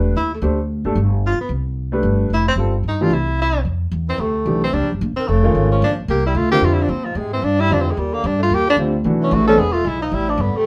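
Small-group jazz in the swing and bop tradition, this brief cut from a longer piece moves at a brisk, swinging clip with a sophisticated, playful mood. A breathy tenor saxophone carries the melody up front, its light vibrato, punchy attack, scooped notes and smooth top giving the line a lively, conversational edge. At 4.1 seconds a second tenor saxophone slips in beneath it as a soft-attacked, vibrato-laden counterline, sitting distant and roomy in the background. Underneath, a natural-sounding grand piano comps close to the listener until 9.6 seconds, while a woody, pizzicato upright bass on steel strings holds down the low end up front. The band sounds as if playing live together in one room, with a moderate studio reverb and harmony that roams through an altered dominant, a major seventh and a closing suspended chord.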